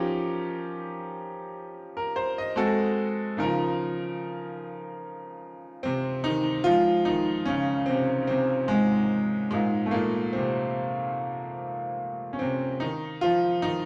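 At 73 BPM in 4/4, with a gentle 54% swing on the sixteenths, this soul piece moves at an unhurried, silky pace in F minor. A brilliant concert grand piano carries everything on its own from 0.0 to 13.9 s, placed up front with a deep bass reaching down to Ab2 and bright upper voicings rising to Eb5. The opening passage drifts through rich extended harmony, from Eb9 to Ab7b9 and settling on Db69, giving the mood a cinematic glow. At 6.7 s the piano moves into a new passage that turns to Fm7, then Bb9sus4, and comes to rest on an open Ebsus2. A wet stone-room reverb with a 1.2-second tail surrounds the natural piano tone, and the live, single-room sound makes this short cut from a longer piece feel intimate and spacious.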